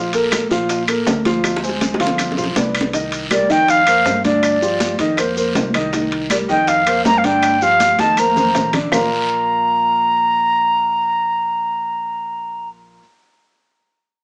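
Heard through a small-speaker sound with moderate studio reverb, this sunny, lively Afro-Cuban jazz excerpt opens with an intimate, vintage concert grand piano up front, its action noise audible, over a thumpy gut-string upright bass played pizzicato and a background bed of high-tuned congas and bongos, ringing timbales, woody claves, raspy guiro and grainy maracas. A pure, straight-toned concert flute enters up front at 3.3 s with a tongued melody, and drum fills mark the moves between sections. The percussion stops at 9.0 s, leaving piano, bass and flute to reach the closing chord.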